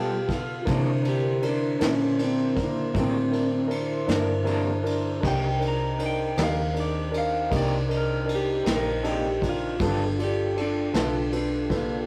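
Rolling at a slow 53 BPM in 12/8, this soulful, laid-back blues excerpt moves from G9 to C9 and Cm7 before returning to G9 at 9.8 seconds. A clean, compressed lap steel guitar, played with fingerpicks and slide and shaped by volume swells, carries the solo melody over a slightly broken-up, picked electric guitar with harmonic tremolo, a natural-sounding grand piano in the background, a soft, flute-like tonewheel organ with key click on slow rotary speaker, and a round, foam-muted fingered bass. Brushes on a dark, rolled-off vintage kit enter at 0.3 seconds with punchy kick, ride cymbal and snare, and the band sits in a rough rehearsal-room sound with light reverb.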